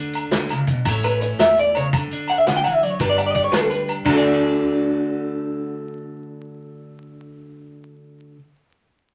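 A sunny, joyful highlife guitar band excerpt in D major opens with a compressed, slightly broken-up accompaniment guitar, a dark, round, foam-muted fingered bass and a clean electric guitar solo, while a vintage kit with dark cymbals, a tight kick and a rolled-off top arrives at once alongside ringing, band-limited agogo bells, all moving at 112 BPM in a straight 12/8. From 1.0 seconds, a bright, twangy, lo-fi guitar sits up front playing arpeggios through harmonic tremolo. The drums and agogo fall away at 4.1 seconds, leaving the guitars and bass under vinyl crackle and moderate studio reverb.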